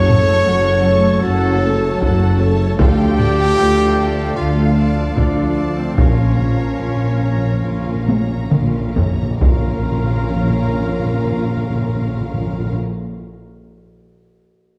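A taiko ensemble struck with hard sticks drives this dramatic, epic orchestral film-score fragment with its vintage, band-limited thunder. Beneath it, a dark tuba and a bowed double bass section form the bass alongside a close, focused cello section, while a distant trombone section and a mellow French horn section hold sustained chords with a woodwind section. A solo trumpet adds softly attacked stabs, and two lush violin sections carry the melody and a second line over a very quiet, expressive viola accompaniment. The pulse gradually slows through the opening passage, and timpani with hard mallets and calf heads enter at 6.0 seconds with a fill, joined by a drum fill at 8.1 seconds. The taiko fall silent at 11.2 seconds as the harmony settles into a moderate scoring-stage reverb, giving the whole a dark, warm sound.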